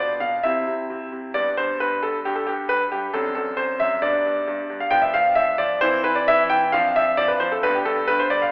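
A clear, intimate baby grand piano carries this cheerful, playful classical-period sonatina on its own from 0.0 to 8.5 s, spanning F#2 to G5. The tempo sits at 133 BPM in 4/4, played with a rubato feel that keeps the phrasing elastic. The piano sounds natural and up front, with the audible noise of its action adding a close, tactile quality. A wet recital hall reverb surrounds it, and the overall sound is heard from further back in the room through a narrow, telephone-like filter. The harmony moves from C through G, D7/F#, Dm69/F and C/E before settling on G, in this short passage cut from a longer piece.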